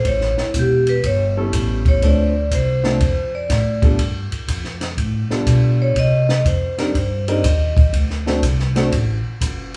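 A close-miked vibraphone, played with medium mallets and the motor off, carries a ringing, metallic solo melody until 7.9 s in this relaxed, playful slice of small-group swing and bop at 122 BPM. Up front beside it, a woody, growly pizzicato upright bass and a dry compact cocktail kit, with dark cymbals, a high-tuned snare and a tight kick, swing through the whole clip. A smooth, vintage grand piano with deep bass adds accompaniment from 1.4 s, all inside a live-room sound with moderate studio reverb.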